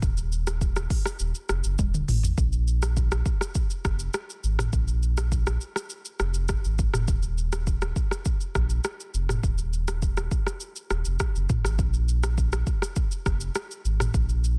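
The recording has a dense, heavily limited modern master with a sheen of digital ambience, and both parts sit up front. It is a sultry afrobeats groove in straight 4/4, taken from a longer piece. An electronic, produced afro-pop drum kit plays throughout, with a deep kick, smooth hi-hat, rim click, shaker and toms, all carrying a tape-warm character, and soft clipping on the snare. A sub bass doubled at the octave holds the low end from start to finish, its full sine and triangle tones speaking with a fast attack and sustaining beneath the kit. A drum fill from 1.8 to 2.4 seconds leads into the next section, which carries the groove through to the cut at 14.6 seconds.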